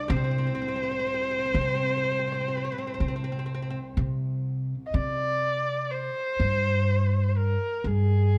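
Longing and melancholic, this brief excerpt from a longer Turkish piece moves at 124 BPM, counted in eighths, in a straight 10/8 metre. A solo bowed kamancheh carries the melody up front, its warm, expressive tone shaped by vibrato and portamento. Beneath it, a plectrum-plucked fretless oud adds a mellow, double-strung second line on a deep register until 3.8 seconds. A bowed chamber cello section holds a clear, earthy drone with light vibrato until 5.0 seconds, just as the music moves into a new section at 4.9 seconds. Pizzicato upright bass on gut strings gives a thumpy, woody pulse near the front of the mix throughout, all captured by close, detailed microphones in a light reverb.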